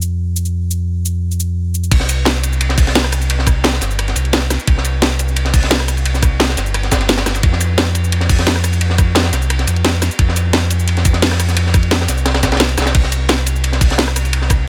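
A knocking, up-front electronic kick drives this rolling, dreamy liquid drum and bass section at 174 BPM, dropping in at 1.9 s alongside a gritty, saturated breakbeat kit with dark cymbals, a high-tuned snare and high-pass filtering, while a deep sine sub bass with octave and an electronic drum and bass kit with a cracking snare play from the start in a small room ambience.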